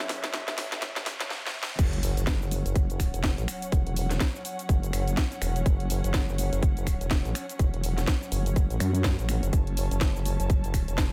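A dry, tightly produced bass house excerpt at 124 BPM in F# minor, swung on the sixteenths and bouncy yet aggressive, opens with a very quiet electronic riser and sub drop and a garage drum kit fill over sustained, bowed chamber strings with rich vibrato, pumping under sidechain. At 1.8 seconds the drop arrives with an impact and a tight, up-front electronic kick, while the nasal, resonant vowel-sweep wobble bass, dark and saturated with chorus, drives the low end. Throughout, the kit features a cracking snare, warm hats, finger snaps, shaker and crash cymbal, with a touch of studio reverb on the drums.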